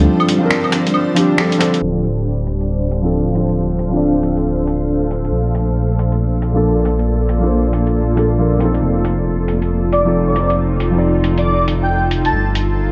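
A deep, rumbling detuned saw bass sits up front in this ghostly, nocturnal future garage excerpt at 137 BPM in D phrygian, under a soft felt-muted upright piano with audible action noise, 12-bit sampler grit and digital delay, a cloudy, evolving granular pad, and a muffled, compressed lo-fi kit of claves, finger snaps and hi-hat, while an airy, dreamy chorused lead with vibrato enters at 9.9 seconds, all bathed in lush hall reverb, vinyl crackle and a filter sweep from 1.8 seconds as the chords move from Dm7 through Bbmaj7 and F7 back to G7sus4.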